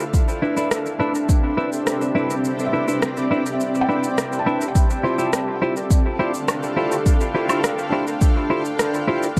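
A cloudy granular pad holds sustained chords over a soft, felt-muted upright piano playing arpeggios through tape echo, while a clean, twangy electric guitar places compressed stabs soaked in dub echo. This meditative, spacious ambient dub moves at 104 BPM in a straight 4/4 in D dorian, and it is cut from a longer piece. A deep, overdriven electronic kick sits up front, joined by a tape-warm layer of electronic shaker, rim click and woodblock that was re-recorded in a large room and sent through dub echo. The kick drops out at 2.4 seconds, the band hits an accent at 4.2, and at 4.8 the kick returns as the harmony moves from Cmaj9 to Dm11. The slow-attack pad, blurred by its own built-in reverb, evolves alongside the mellow, intimate piano. The whole mix is echo-heavy, with light reverb and a digital ambience.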